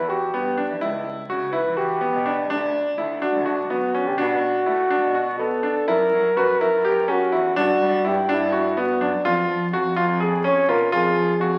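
This excerpt of contemporary chamber music opens with all three voices at once: a mellow, soft-attacked flugelhorn carrying a classical-style solo melody up front, bright concert grand piano arpeggios, and a bowed cello bass. The pulse runs in an uneven 7/8 at 250 BPM counted in eighths, with a straight feel and a restless, urgent mood. The piano sounds brilliant yet worn and intimate, with audible action noise, deep bass and long sustain sitting close. The lone cello is nasal and reedy, a gut-string, period-style voice heard from a distance. After a brief break from 5.4 to 5.9 seconds, the harmony moves from Emadd9, D and Bm into a second section built on F#7 and Gmaj7 colours. The trio is bathed in wet scoring-stage reverb and dressed as a very old 78 rpm record, with vinyl crackle beneath the playing.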